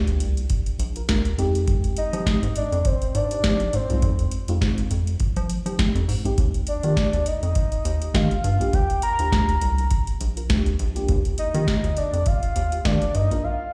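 Heard through a club's PA at a live gig, this slick, late-night early-eighties boogie funk excerpt moves at 102 BPM with a swung sixteenth feel, as a booming, overdriven analog drum machine with a deep kick, crisp snare and metallic hats sits up front beside a rubbery, hollow square bass, while a dark FM electric piano with tremolo and slapback echo comps on Ebmaj9 and Fm9 before a soft, round octave-layered synth lead with chorus enters at 2.0 seconds, leading into a break at 13.4 seconds.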